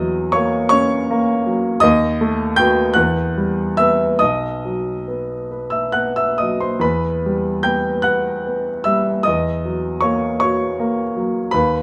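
A warm, polished baby grand piano sits present and up front as the sole voice in this 11.8-second fragment of a wistful, mournful romantic classical nocturne, unfolding in a slow, rubato 12/8 at roughly 44-55 BPM in dotted quarters across a span of B1 to G6, with harmony moving from F#7/E through B7/D#, Em and B to Em and back to F#7/E, tuned to A4 = 439 Hz and framed by a moderate large-studio reverb.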